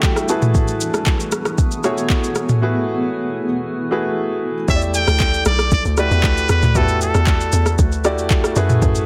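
A straight 4/4 amapiano groove at 116 BPM sets a deep, late-night mood in this brief cut from a longer piece: a soft-kicked, overdriven electronic drum kit with handclaps, rim click, shaker and toms sits up front beside an intimate concert grand piano with audible action noise, which opens with a fill and voices F#m11 over a cloudy, detuned granular pad that pumps until 4.6 s, before the drop at 4.7 s brings in a hollow, bouncy log drum bass and a nasal straight-muted trumpet melody with delay over Em11, all in a dense, heavily limited modern master with light digital ambience.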